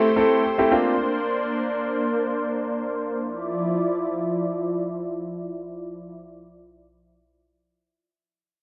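Pop in free time, driving yet bittersweet, this short fragment cut from a longer piece opens with a brilliant, intimate grand piano playing accompaniment for under a second, its action noise audible and its tone softened by a low-pass filter. Entering at the same moment, a thick, detuned sawtooth pad with a slow attack and long release holds sustained chords until 6.2 seconds, shimmering with chorus under a filter sweep that runs to 3.2 seconds, as the harmony moves from Am7 and Bbadd9 to Dmadd9. A lush hall reverb surrounds the parts, and a faint mains hum sits beneath them.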